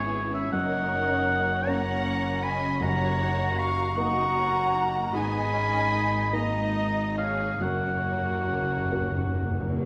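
A wet, reverberant scoring-stage sound frames this slow, rubato cinematic excerpt in 6/8 at 45-54 BPM, uplifting and hopeful, where a distant, up-front oboe carries a second line above veiled con sordino violins playing the melody and another line, while muted violas and a felt-muted upright piano accompany, a mellow, ringing harp arpeggiates, dark muted cellos and double basses hold the bass, and calf-headed timpani on medium mallets enter at 2.8 seconds and return with a fill from 7.6 seconds over chords moving from C#m7/G# through G#madd9 to F#.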